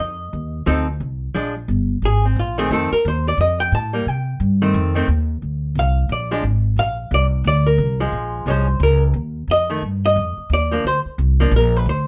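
A woody, pizzicato upright bass sits up front in this playful, swinging jazz passage, its steel strings giving a warm acoustic body to the bottom end throughout all 12.1 seconds. Beside it, a clean, dark hollow-body archtop guitar, miked and amplified, comps with picked, compressed chords through a bluesy run of dominant sevenths that darkens to Bbm7 at 8.1 seconds before settling on a Bbadd9. Light reverb gives the duo a touch of room around its lilting swing feel.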